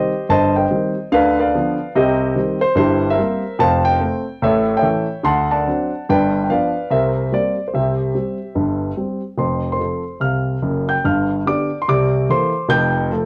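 Exuberant and swinging, this 13.3-second stride piano fragment at 145 BPM in F major features a solo concert grand with a warm tone, deep bass and short sustain, placed up front in moderate studio reverb on a cassette home recording, opening on C minor and running through a chain of seventh chords before a second section from 9.4 s that moves from C13 back to F.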